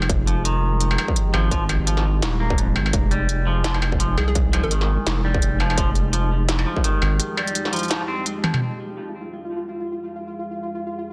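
Half-time drum and bass at 169 BPM in F minor, spacious and tense, this excerpt opens on a drop with a distorted electronic kick, while a clanging, low-passed industrial kit of hi-hat, snare, struck metal and toms sits up front with a thick, saturated sub bass. A twangy clean electric guitar picks delayed arpeggios, and a hollow square pluck flickers a brief melody in the background around 4.2 seconds. Beneath it all, a moody sawtooth pad holds sustained chords with chorus, reverb, 12-bit sampler grit and sidechain pumping, alongside a mellow pulsing gated texture. After a drum fill at 8.4 seconds, the industrial kit and guitar stop at 8.6 seconds, leaving the pad, under a filter sweep, and the gated texture to carry the closing Fm chord.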